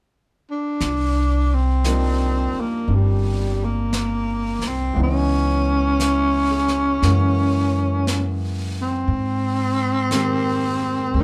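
Swung eighths in 4/4 carry this intimate, smoky jazz ballad fragment, where a breathy, raspy tenor saxophone leads up front from 0.5 s with a growling subtone, vibrato and scooped notes, a woody pizzicato upright bass and a softer brushed drum kit join at 0.8 s, and a clear concert grand with long sustain arrives at 1.9 s over Cm11, Dbm7, F#9 and Abmaj9 chords, the whole heard from further back within a club reverb.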